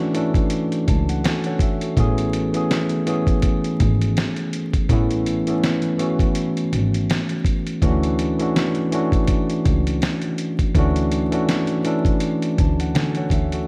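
A relaxed 82 BPM groove in 4/4 with a gentle 16th-note swing sets up this dreamy, mellow lo-fi hip hop clip, cut from a longer piece. The dusty, sampler-style drum kit sits up front with a thumpy kick, fat snare and hi-hat, its gritty, compressed sound carrying a tape-warm character and the air of a large room where it was re-recorded. A clean tine electric piano plays the accompaniment through its built-in speakers under a low-pass filter, adding an early fill between 0.5 and 2.0 seconds. A rich double bass enters at 0.9 seconds, bowed by a single close player with a soft attack and an airy, nasal, floating tone. The harmony moves from Dmaj9 to Amaj9 and back to Dmaj9 at 7.8 seconds, while vinyl crackle hangs over the dry, intimate mix.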